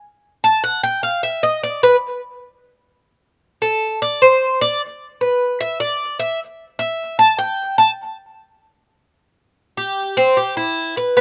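A straight 4/4 pulse at 151 BPM drives this short Latin excerpt, cut from a longer piece and carrying a sultry, danceable mood. A lone Cuban tres enters at 0.4 s and carries the whole passage as a solo, ranging from B3 up to A5. Its acoustic, picked double strings have a metallic ring, with some strings doubled at the octave, and a slapback echo trails each note. The tres sits up front in a dry, open-air sound with little reverb, as if recorded outdoors. At 9.6 s the music moves into a new section, and the clip closes at 11.2 s.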